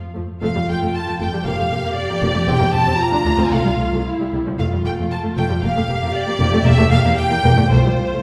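A wet scoring-stage reverb places this string orchestra further back in the room, giving a graceful, cheerful classical-period movement in F major at a quick 115 BPM in 2/4, played with a rubato feel. The warm, up-front violas and the expressive, close double basses begin at 0.2 seconds, and at 0.4 seconds they are joined by the even cellos, a lush, focused yet distant first violin melody, and a smooth second violin line in the background, all bowed with vibrato. The harmony moves from F through Gm7/F, C/E and Bb before closing on F/C at 7.7 seconds, in a short passage cut from a longer piece.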